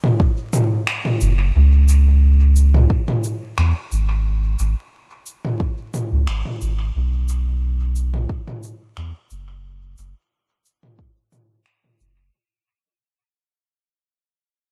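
Spacious and meditative, this short excerpt of ambient dub moves at 89 BPM in 4/4 with a light swing on the sixteenths, set in C# minor and tuned slightly high to A4 = 442 Hz. An organic electronic drum kit of cabasa, finger snaps and toms runs from the start, its sounds carrying a dub echo and the air of a large room while sitting up front. A layered electronic kick joins at 0.2 seconds, deep and tape-warm, holding a forward place in the mix. At 1.2 seconds a soft dub sub bass enters, round and mellow with a triangle and square wave character, a fast attack and sustained notes ranging from F#1 to E2. The sound is dry, coloured by vinyl crackle and lossy compression artefacts, and a fade-out runs from 1.5 seconds to the close.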